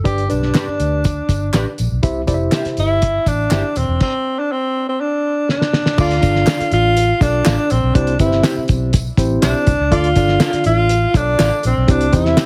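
A straight, driving four-beat groove from a cloth-damped, thuddy drum kit with a fat snare, tight kick and dark cymbals sits up front, joined by a round, foam-muted fingered electric bass and background tambourine and handclaps in this urgent, uptempo 1960s-style soul excerpt. A worn, slightly out-of-tune tine electric piano fills out the accompaniment and a slightly broken-up electric guitar through a small old amp adds stabs beneath a distant, roomy tenor saxophone melody with light vibrato and tape echo. A drum fill at 5.5 s leads into the second section, where a smooth-topped horn section briefly adds a second line at 6.0 and 9.9 s, all within a heavily compressed, radio-style sound.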